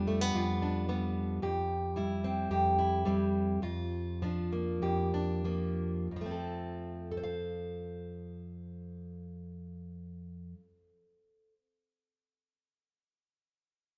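Uplifting and nostalgic, this short folk excerpt in F major moves at 89-112 BPM in a straight 4/4, easing into a slowdown from 1.4 to 6.1 seconds. A fingerpicked, plugged-in steel-string acoustic guitar sits up front with a concert tone, carrying the accompaniment through a chord sequence that settles over a held F bass before landing on F at 6.1 seconds. A round, foam-muted picked electric bass is barely audible until 1.4 seconds, and the band plays live together in a stone room with moderate reverb.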